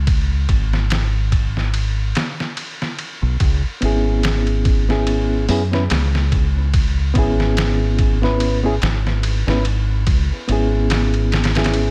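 This is a brooding, cinematic slice of trip hop cut from a longer piece, set in C# minor at a slow 72 BPM in 4/4, with a lazy swing on the sixteenths. A sampler-style drum kit sits up front from 0.1 seconds, compressed, pitched down and muffled, with a thumpy kick, a medium-tuned snare, hi-hat and ride cymbal in a small room reverb. Alongside it, a deep dub bass played with the fingers opens at 0.0 seconds, dark, round and punchy, heard direct and amped in the low register between G#1 and F#2. At 3.8 seconds a reedy electric piano enters, clean and heard through its built-in speakers, colored by harmonic tremolo and tape echo as it fills in the accompaniment. The harmony moves from G#sus4 to C#m7, and the overall sound stays dry and close.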